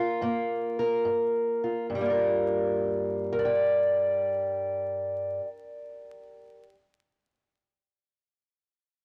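A fingerpicked steel-string acoustic guitar plays alone in a dark, boxy parlour tone, up front and tinged by cassette tape, opening on a Gm7 and slowing down over the first 1.9 seconds of this brooding, smoky country blues fragment in G minor, set in a swung 70 BPM feel, its light reverb and home-recorded vinyl crackle lingering until the cut at 6.7 seconds.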